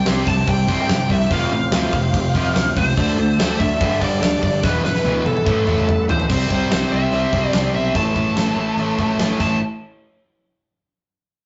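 Driving and aggressive, this hard rock excerpt charges along in a straight 4/4 feel, cut from a longer piece. A dark, distorted, bluesy lead guitar carries the melody from the start, while an overdriven semi-hollow guitar with spring reverb and a bright, overdriven electric guitar set further back both pound out the riff underneath. A thick, gritty tonewheel organ holds sustained chords through a slow rotary speaker in the background until it drops out at 6.3 seconds, as the music moves into a new section. A growly, punchy picked bass sits low in the mix, and an up-front gated 80s drum kit with a fat snare, punchy kick and bright cymbals drives everything forward, rolling through a drum fill from 4.6 seconds and another near the close. The rough rehearsal-room recording carries a wet studio reverb and a saturated, dusky top end.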